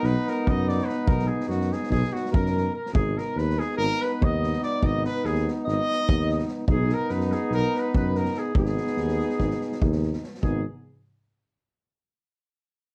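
A close-miked, mellow tuba sits up front in this fiery, virtuosic Balkan brass band passage, anchoring the bass with vibrato across the low register. It moves at 289 eighth-note beats per minute in a straight 9/8 in Ab minor, with the harmony shifting between B and Abm. A distant, roomy trumpet carries the melody with light vibrato, while a brilliant trombone and a warm euphonium, the latter set further back, fill out the accompaniment. From 2.1 seconds an alto saxophone with a smooth top adds a second line in the background, shadowing the trumpet's range. A street-band drum kit in a small room drives things with a boomy kick and a medium-tuned snare, its top rolled off. Light reverb and a dark, warm production give the short cut, taken from a longer piece, a rounded, classical-leaning sound.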